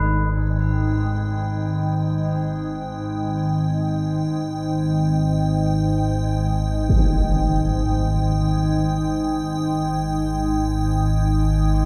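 Cavernous and unsettling, this dark ambient drone in free time rests on an up-front, detuned organ-like drone with ensemble chorus, while an icy, crystalline glass pad with chorus enters at 0.7 seconds, metallic tubular bells ring out delayed arpeggios as they fade in from 0.4 seconds, and a huge, low-pass-filtered impact lands in the background at 6.9 seconds, all steeped in a wet cathedral reverb in a passage cut from a longer piece.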